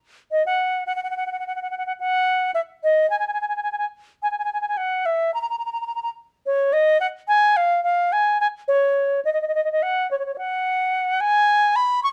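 A bright, reedy wooden flute plays solo and up front from 0.3 to 12.1 seconds in this bouncy, carefree calypso excerpt at 107 BPM in 4/4 with a light swing, its pure, crisp-attacked tone carrying vibrato over light reverb in a dark, warm production.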